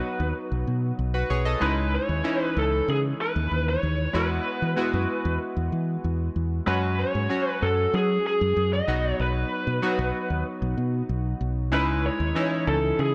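A dark, overdriven lead guitar through a small cranked amp carries the melody with a picked, lo-fi bite in this romantic, glossy 1980s-style pop excerpt at 95 BPM in 4/4. Bright, chorused retro synth keys, built on detuned sawtooth and pulse-wave tones with pulse-width modulation, filter sweeps and a fast, decaying attack, play the accompaniment over chords moving from B through C#madd9, Eadd9 and F#sus2. A round, punchy fingered electric bass enters at 0.2 s, and light reverb lends space to the up-front parts.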